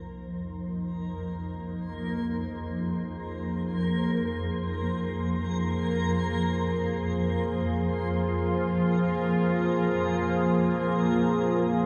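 In free time and centred on F minor, this desolate, cavernous fragment of dark ambient drone sits on one unchanging F minor chord for its 11.9 seconds, cut from a longer piece. Up front, a swarming, detuned drone warbles with a granular, vintage edge. Beside it, a deep, moody sawtooth pad with chorus and a sub octave fades in across the whole span. Further back, a reversed, dreamy triangle texture swells, and very quiet gamelan-type bossed gongs add round, beating bronze arpeggios low in the register. The huge, wet reverb rings for about 7.1 seconds, the spectrum stops around 10.3 kHz, and a faint mains hum lingers.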